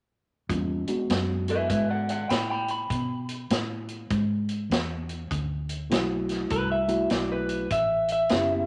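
Electric blues shuffle with a rollicking, laid-back swing, cut from a longer piece. A vintage drum kit sits up front with a punchy kick, a medium-tuned snare and hi-hat, its acoustic sound warm and rolled-off on top in a studio room. Underneath, a dark, foam-muted fingered electric bass gives a round, amped bottom end from 0.5 seconds on, while the harmony moves from E7 to D7 and then A7. An overdriven reed electric piano, gritty and played through a combo amp with spring reverb, adds accompaniment in two stretches, dropping out after 2.2 seconds and returning at 5.9 seconds. The lead belongs to an electric guitar through a small old amp, dark, picked and slightly broken-up, entering at 1.5 seconds with spring reverb and sitting up front as the loudest part.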